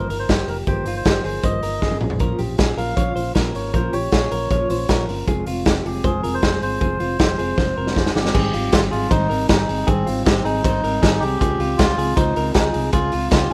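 A raw garage drum kit sits up front in this bright, breezy stretch of jangly indie pop. Its punchy kick, medium-tuned snare, hi-hat, ride, crash and toms sound saturated and gritty in a small room, with a rolled-off top. Fills arrive around 1.8 seconds and again from 7.6 seconds, leading into a new section at 8.3 seconds, where the harmony moves from minor-tinged chords toward major sevenths. A reedy, breathy melodica carries the tune with a nasal, wooden edge. Beneath it, a full-bodied jumbo steel-string acoustic guitar is fingerpicked and a clean, direct-recorded electric guitar adds twangy, compressed arpeggios. A dark, round, foam-muted vintage bass anchors the low end, and the whole piece has the sound of a rough home demo mix cut from a longer song, set in a studio ambience.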